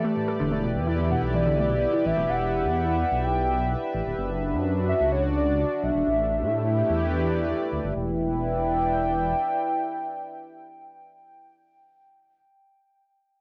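IDM in E minor at 127 BPM, this short excerpt from a longer piece feels cerebral and melancholic, its 4/4 pulse kept straight. A mellow, warbling lead carries the melody with chorus, tremolo, vibrato and tape echo, while a smooth analog pad holds sustained chords, roughened by vintage 12-bit sampler grit. A dusty, nasal pluck traces arpeggios with a filter sweep and tape echo, heard only until 2.3 seconds. A deep, rumbling detuned saw bass enters at 0.4 seconds, its beating tone dark and up front, and drops out at 9.3 seconds. The chords move from Em9 through Dmaj9/F# and A9sus4 before settling on Em7 at 8.0 seconds. The whole thing sits in a moderate room reverb with the hazy, lo-fi character of a home cassette recording.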